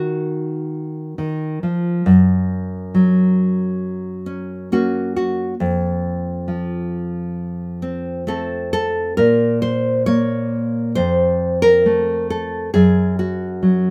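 A fingerpicked nylon-string guitar opens this wistful, melancholic folk excerpt on its own, moving freely in rubato through Ebm, Gb and F chords with a full-bodied, deep classical tone placed up front, and finger squeak adds intimacy. At 9.2 s a second passage begins, where the chords fall away before F briefly returns. Moderate studio reverb gives the guitar a gentle sense of room through to the close at 13.9 s.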